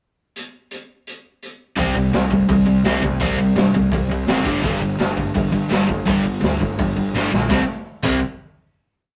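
A raw garage drum kit kicks off alone at 0.4 seconds with its boomy kick, gritty saturated snare and crash cymbal in a small room, then at 1.8 seconds a crunchy, double-tracked overdriven guitar hammers palm-muted eighth notes over C5 and G5 while a bright, punchy fuzz bass drives eighth notes beneath, all at a straight 168 BPM in an aggressive punk rock piece with light reverb and a rough rehearsal-room sound, closing on a drum fill at 7.1 seconds into a final C5 chord.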